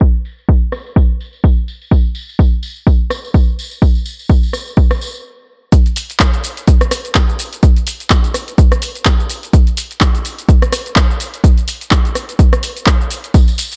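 A punchy analog kick sits up front in this feel-good, euphoric house fragment at 126 BPM in 4/4, with a 57% swing on the sixteenths. An acoustic tambourine recorded in a small room plays until 5.2 s and returns briefly at the close, while from 0.7 s an analog drum machine, re-recorded in a large room, adds handclaps, hi-hat, rim click and shaker through low-pass filtering. A filter sweep runs over the opening, and a short stop gives way to the drop at 5.7 s, all set in a dark digital ambience.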